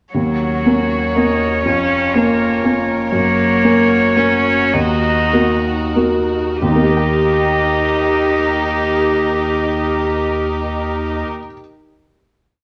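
A soft, felt-muted upright piano sits up front with bass and chords on the beats, joined by a single cello carrying the melody with a pure, floating top, an airy-bowed viola and a dark chamber string section holding sustained chords, and a clean sine sub bass drone, in a reflective, melancholic neoclassical piece in 3/4 that moves with rubato between 89 and 122 BPM, slows from 2.4 to 6.6 seconds, and from 6.6 seconds rests on a final Eb chord bathed in wet studio reverb.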